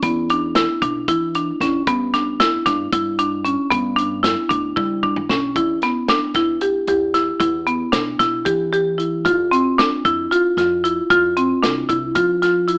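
A marimba played with medium hard mallets sits up front and mid-forward, its padauk bars giving a woody tone as it spins arpeggios between B3 and G4 throughout this tense, intricate cut from a longer progressive instrumental. The band moves in 7/8 at 228 BPM counted in eighths, with a straight feel, and the harmony runs from E5 to G before settling into E phrygian at 5.6 s, passing through Em and reaching F5 at 9.3 s. Beneath the marimba, a pizzicato upright bass with steel strings adds a dark acoustic low end from B1 to G3, sitting well back in the balance. A warm soul drum kit of hi-hat, kick, snare and toms sounds distant and roomy despite its tight booth, with a medium-tuned snare, a tight kick and a rolled-off top, and it plays a fill from 4.8 to 5.6 s that leads into the second section. The whole recording carries an AM radio sound with light reverb.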